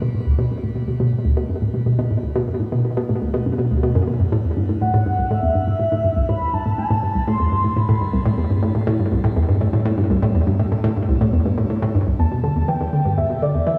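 An ambient fragment opens with a hollow, bouncy square-wave pluck riff, detuned and wave-folded with chorus and analog delay, set up front in a wet concert hall, joined at 4.8 seconds by a shimmering, dark pulse-width lead melody with vibrato and shimmer reverb that returns at 12.2 seconds as Em arrives after a chordless stretch that followed the opening Bm, all in a mysterious, expansive mood.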